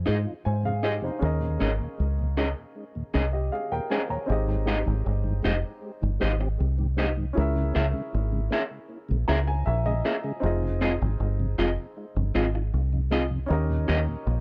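Reggae at 78 BPM in Ab major, this smooth, romantic passage is cut from a longer piece and sits in a dry, close 1970s-style studio sound with a touch of digital ambience. A deep dub fingered electric bass anchors it up front, round and punchy with a foam-muted thud, while an electric guitar through a small old amp plays picked stabs with a dark, slightly broken-up edge. A baby grand piano supplies intimate accompaniment, its short sustain and audible action noise trailed by tape echo, and it plays a fill from 8.9 to 10.4 seconds. Further back, a mellow tonewheel organ adds clean, round support through chorus vibrato, a slow rotary speaker and its own tape echo. The harmony moves from Fm7 and Eb7sus4 into a longer second section at 4.3 seconds that opens on Abmaj7 and passes through Dbm6 before returning to Fm7 and closing on Eb7.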